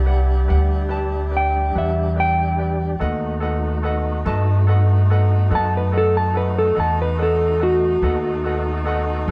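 Slow blues in a mournful, smoky mood, this short cut from a longer piece moves from Em7 to B7 at 3.0 seconds, with a dark, clean, fingered electric guitar carrying the melody up front through spring reverb beside a woody pizzicato upright bass, while a reedy tonewheel organ with key click, chorus vibrato and slow rotary speaker and a smooth, warm jazz horn section hold sustained chords beneath, and a brilliant, long-sustaining upright piano adds accompaniment from 0.1 seconds, the whole band playing live in one room with light reverb.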